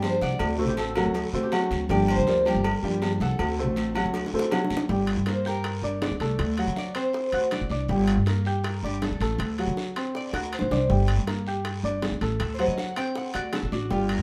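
A sultry Cuban son and guajira groove in G minor at 160 BPM opens with a metallic, double-strung Cuban tres melody over dark, fingerpicked nylon-string guitar, smooth vintage grand piano arpeggios, a woody, thumpy upright bass up front, tight high-tuned cowbell and bongos in the background, ringing timbales and agogo bells and a raspy guiro, with a fingerpicked flamenco guitar line slipping in briefly at 0.6 seconds, before a drum fill leads to 4.9 seconds, where the nylon-string guitar stops and the tres takes a solo over alternating D7 and Gm chords in a moderate studio reverb for the rest of this excerpt.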